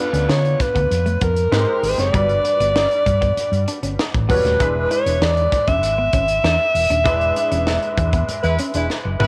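Polished 1980s jazz-funk pop at 98 BPM in a straight 4/4, this short excerpt cut from a longer piece has a breezy, glossy mood over a chord movement from Dm6 through G#maj7 and Gmaj7 to E7. A breathy alto saxophone carries the melody up front, its jazz-style subtone and vibrato giving the lead a soft, intimate voice. Beneath it, a bright, brilliant grand piano comps with analog chorus, while a clean, compressed electric guitar plays a fingered riff with subtle chorus, tucked in the background. A dark, round hollow-body short-scale bass sits punchy and forward, and a crisp fusion drum kit with a high-tuned snare and tight kick breathes in a small, pumping room. The band hits an accent from 7.1 seconds, a mellow, distant horn section slips in with a tight second line at 8.4 seconds through analog delay, and a drum fill closes at 8.9 seconds, all wrapped in moderate spring reverb and the character of a home cassette recording.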